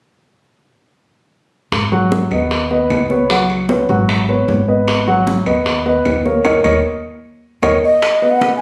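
Captured on a phone in a studio with moderate ambience and reverb, this driving, sultry Afro-Cuban jazz fragment opens at 1.7 s with a dark, thumpy gut-string upright bass, ringing high-tuned congas, tight vintage bongos played with soft hands and distant woody claves, joined at 1.9 s by a prominent concert grand piano with deep bass. A drum fill and band accent arrive over the move from G#m7 to a D#5 chord, and at 7.8 s a breathy, hollow silver flute steps up front with vibrato and tongued phrasing. Metal-shelled timbales enter at 8.0 s as a rootless G#m7 returns.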